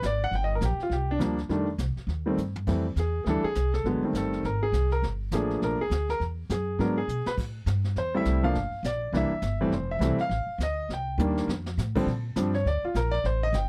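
A clear, intimate baby grand piano with audible action noise sits up front and takes a solo from 2.7 s in this playful, swinging jazz piano trio in F major at a brisk 204 BPM, backed by a woody, thumpy pizzicato upright bass and a brushed drum kit with dark cymbals, a boomy kick and fills at 2.4 and 7.1 s, in a dry, close 1970s-style studio recording.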